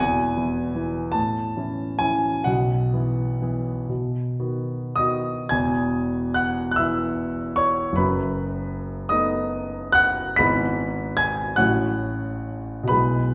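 A lush recital-hall reverb with a 1.5-second decay surrounds this recording, giving it a spacious, slightly distant room sound while the piano itself still sits up front. It is a romantic classical nocturne for solo piano, tender and nostalgic in mood, moving in a lilting 6/8 with a freely breathing rubato. The concert grand has a warm tone and a deep bass, and its range spans from E1 up to B6 across the 13.3 seconds it plays. The opening phrase rests on E, A and a suspended B chord that settles onto B. At 5.5 s a new passage begins on E again, then drifts through B7 over F#, E over G# and F#m over A. Cut from a longer piece, the passage ends on that last chord.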